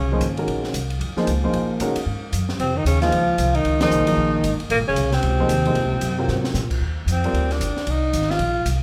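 A brisk swung 4/4 at 227 BPM drives this searching, hypnotic modal jazz in Bb minor, with a woody, thumpy pizzicato upright bass up front and an acoustic drum kit of dark cymbals, high-tuned snare and boomy kick. A breathy, subtoned tenor saxophone carries the melody with scooped notes and vibrato over a smooth-topped bass clarinet second line, while a natural-sounding baby grand piano accompanies on Bbm9; the band hits an accent at 3.8 seconds and the drums play a fill at 6.3 seconds. At 6.8 seconds the harmony moves to Cm11 as the tenor takes a whispered, intimate solo, heard in the moderate reverb of a recital hall.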